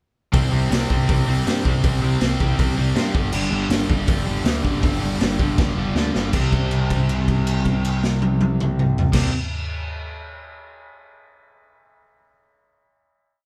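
A raw garage drum kit sits up front with a boomy kick, medium-tuned snare and a gritty, saturated sound in a pumping small room, driving a fast punk groove under a rowdy, upbeat punk rock piece at 160 BPM. A cranked stack guitar and an overdriven semi-hollow guitar play bright, driving eighth-note power chords over a growly fuzz electric bass, the band moving from C5 to G5 before returning to C5. After a drum fill from 5.6 to 6.3 seconds, the band hits a final chord held until about 9 seconds, all captured live in one room with moderate reverb.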